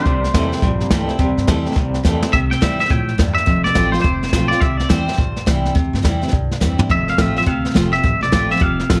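Rockabilly at a rollicking 210 BPM with a swung, retro feel in C mixolydian, this short excerpt sets a bright, clean, twangy lead electric guitar with spring reverb and tape echo up front over a full-bodied picked dreadnought acoustic with audible finger squeak, a slightly broken-up tremolo electric riff that drops out at 2.3 seconds, a woody, thumpy gut-string upright bass plucked in the background, and an up-front brushed drum kit with a boomy kick that fills at 2.0 and 6.6 seconds, all moving between C and F in a studio room.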